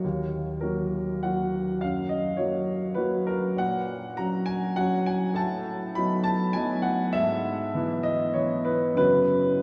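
Drenched in a vast cathedral's echoing reverb, this fragment of a romantic character piece places a warm, open baby grand piano up front, its long sustain blooming into the space. Playing solo throughout its 9.6 seconds, the piano moves in triple metre with uneven, rubato phrasing, reaching from D#2 up to B5. The mood is passionate and lyrical, with harmonies drifting from D#m and F#maj7 toward B7/A and E/G# before settling on an open F#5 at 9.0 seconds.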